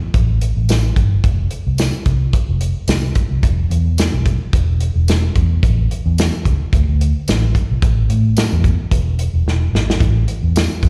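This straight-eighth soul blues moves at 110 BPM in 4/4, with a light swing on the sixteenths, in A minor, and carries a soulful, brooding mood. A vintage muted fingered electric bass anchors the groove from start to finish, its dark, round, foam-muted tone pushed up front as it ranges from E1 to A2. Beside it, a warm soul drum kit of hi-hat, kick, snare and tambourine plays throughout, with a medium-tuned snare and a tight kick, the kit touched by slapback echo. Near the close, a drum fill arrives at 9.5 seconds. The sound is that of a live gig heard through the venue's PA, with recital-hall reverb framing this brief passage cut from a longer piece.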